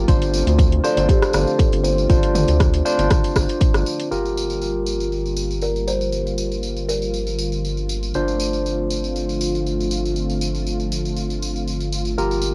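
A driving, earthy afro house groove at 119 BPM in G minor, lightly swung, where a punchy electronic kick and a house drum kit with bright hats, rim clicks and toms carry the opening seconds, while a jingly, vintage tambourine runs throughout. A round, deep analog bass with a wave-folded edge and a barky tine electric piano through a combo amp both pump alongside a smooth, detuned sawtooth pad that pumps as well. From 4.1 seconds a filter sweep moves across the electric piano as the chords shift from Dm7/G to Gm7 and back. A woody, hollow kalimba plucks a ringing melody until 7.9 seconds, and the whole cut carries the light reverb and tape grain of a home cassette recording.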